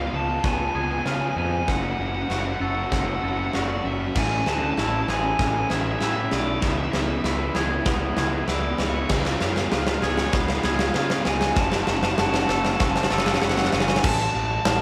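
Long, cavernous church reverb surrounds this cinematic, euphoric post-rock passage, a build-up cut from a longer piece and set in straight 4/4. The huge arena drum kit sits up front, acoustic and mid-forward with a punchy kick, a medium-tuned snare and crash cymbal under a rolled-off top; it enters at 0.4 s and plays a drum fill until 14.0 s. Beneath it, a fuzz-laden picked bass growls in a bright, overdriven tone, while a thick, dark fuzz guitar, double-tracked and distorted, holds a riff in the background. A twangy, scooped clean guitar picks arpeggios further back, and a biting overdriven lead guitar carries the melody up high in a warm tone. The harmony moves from C#7 through F#m, Amaj7 and C#m7, returns to C#7 and F#m, and the chords fall away at 14.0 s.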